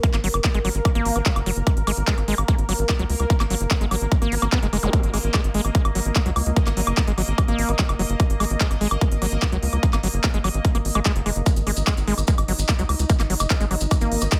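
A punchy electronic kick drum sits up front in this short, driving psychedelic trance excerpt at 147 BPM in straight 4/4, tuned to A4 = 441 Hz. Beneath it, a tight sequencer bass with a plucked, fast-decaying sawtooth and square-wave tone rolls between F#1 and C#2, while an overdriven acid bass riff, squelchy and gritty with a resonant filter sweep, sidechain pumping and delay, spans F#3 to B3. A big-room dance drum kit adds crisp hi-hats, handclaps and woodblock, both it and the kick carrying a tape-warm character from being re-recorded in a large room. Overhead, a bubbling texture of detuned sawtooth chords with random filter steps, chorus, built-in reverb and sidechain pumping sustains brightly across A#3 to D#5. A brief electronic zap flickers in the background at 4.8 seconds, and grainy, mellow acoustic maracas join from 11.5 seconds, while the overall mix stays dry with little reverb.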